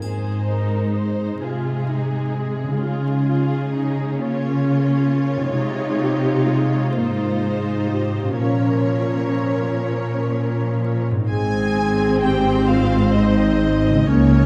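A dark, reverberant scoring-stage sound with faint vinyl crackle frames this tender, uplifting excerpt of a cinematic film score in Ab major, moving in a slow, rubato 6/8 at 43 BPM, where lush bowed violins and focused, close violas sing over rich cellos and a ringing background harp, a soft triangle touch ending by 1.8 s, before a clear background violin melody, a dark, soft-attacked solo clarinet and distant double basses enter at 11.3 s.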